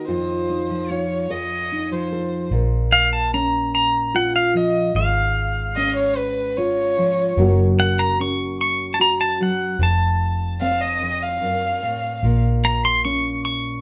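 Acoustic folk-pop ballad in Bb minor at a slow 49 BPM in 6/8, reflective and intimate, where an up-front, clean pedal steel guitar carries the melody over a close, airy-bowed violin second line that stops at 12.4 s and a full-bodied, thumb-plucked nylon-string guitar, joined at 2.5 s by a round, foam-muted vintage electric bass as the chords move from Bbm through Db/Ab, Gb and F, all played live in one room with a wet studio reverb.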